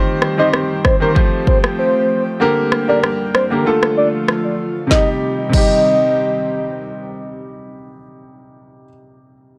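A clear, vintage-toned grand piano and an airy, breathy pad open together at 0.0 s, both pumping against the beat, the piano's short-sustained chords up front while the pad's detuned, noise-layered chorus drifts softly beneath. This is a bouncy, sultry dancehall cut at 96 BPM in C dorian, moving through Cm, Fadd9, Gm and Dm before returning to Cm. An electronic afro-pop kit joins at 0.2 s with a deep kick, woody snare, rim clicks and crash, sitting forward in the mix, though the kick drops out between 2.4 and 4.9 s. A soft, octave-layered synth lead carries the melody in a narrow upper range, its round, sub-octave body colored by chorus, tremolo, vibrato and analog delay. The sound is dry and gritty with little reverb, and as a fragment of a longer piece it ends with the piano still playing after the other parts have stopped.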